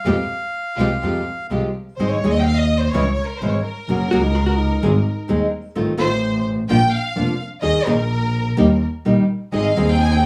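Captured in a small room with light reverb, this passionate, melancholic tango is cut from a longer piece and unfolds in 4/4 with a rubato feel. A reedy, dark and airy bandoneon carries the opening melody up front, bathed in plate reverb, while a lush symphonic string section adds bowed stabs in the background. A bright, fingerpicked classical nylon-string guitar with fresh strings provides accompaniment up front, anchored by a focused, smooth-topped double bass with vibrato played by a single player. From 2.0 seconds a rich, even studio violin section takes over as soloist, sitting at a distance, and a clean, compressed hollow-body electric jazz guitar briefly picks out a second line from 4.1 seconds. The harmony passes through Dbm, F7/A and Ebsus4 before settling on Ab, where the string stabs return at 9.5 seconds.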